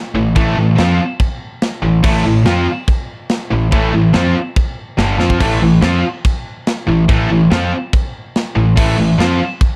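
Dark, warm small-room production frames this heavy, aggressive metal excerpt at 143 BPM in A minor, where an up-front high-gain guitar riff sits ahead of a very quiet, compressed distorted guitar and a double-tracked tight guitar in the background, all three bright and picked, over a growling, overdriven electric bass and a tight acoustic kit of kick, medium-tuned snare, china and crash cymbals that drops a fill at 5.2 seconds.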